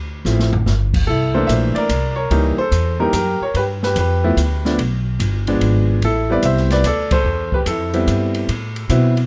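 A swung 3/4 groove at 146 BPM carries this relaxed jazz piano trio fragment, opening with a drum fill from 0.2 to 0.7 seconds on an airy, polished kit with dark cymbals and a boomy kick, heard lower in the mix than the other two parts. A woody, pizzicato upright bass with steel strings sits up front from the very start, while a clear, smooth grand piano with a vintage character carries the melody through changes such as Dm7, C13, G7 and Am7. The band hits an accent together at 7.0 seconds, all under a light reverb.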